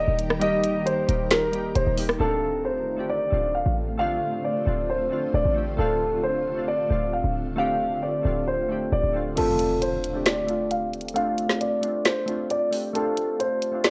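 Brooding and menacing, this half-time trap excerpt at 134 BPM in D phrygian sets a dark, mellow concert grand piano melody with delay over glassy, wave-folded digital keys, a blurred granular cloud pad and a punchy, tight 808-style bass, while the overdriven trap kit with its woody snare and bright hats drops out after 2.2 seconds and returns at 9.4 seconds alongside an electronic impact, all washed in a moderate room and warbling, worn cassette tape drift.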